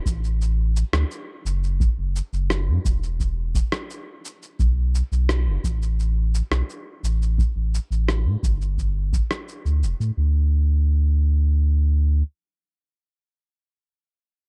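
A round, mellow sine sub bass sits up front with a fast attack and long sustain, colored by tube saturation as it anchors this relaxed, smooth sunset chillout piece at 86 BPM in straight 4/4, tuned to A4 = 439 Hz. A deep analog-style electronic kick and a gritty, compressed shaker and rim click keep time in a small room ambience, with the kick dropping out at 9.3 seconds and the percussion at 10.1 seconds. That leaves the bass sounding alone until 12.2 seconds, all within a dark, digitally ambient production that is cut from a longer piece.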